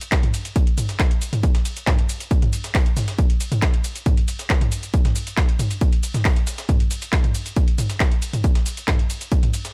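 An industrial, intense techno excerpt at 137 BPM in straight 4/4 opens with an up-front electronic kit of handclaps, metallic hats, ride cymbal, shaker and toms over a very quiet, gritty breakbeat kit with a medium-tuned snare, joined at 0.1 seconds by a punchy, up-front electronic kick, all drums with little reverb.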